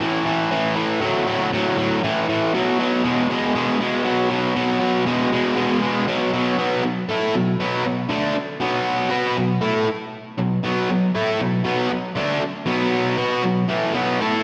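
Driving and gritty, this rock excerpt moves at 118 BPM in a straight 4/4, set in B dorian. A lone distorted electric guitar carries the whole 14.4 seconds, its bright, picked tone double-tracked and placed up front, reaching from A2 up to B4. Slapback echo adds a quick doubling to the guitar's attack. The harmony moves from A5 to B5, then settles on Bm as the second section arrives at 6.6 seconds. A lush hall reverb with a 2.3-second decay wraps the guitar in a big arena sound.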